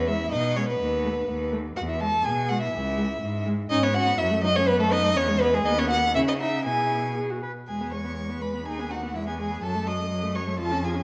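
A quick, graceful and spirited classical-period string quartet movement in E major at 124 BPM in a straight 2/4, this fragment from a longer piece sets a close, smooth first violin melody and an even second violin line sitting up front, both clear-toned, over a rich viola accompaniment and a focused, close cello bass, all played with vibrato in a moderate recital hall reverb, with a new section arriving at 7.7 seconds.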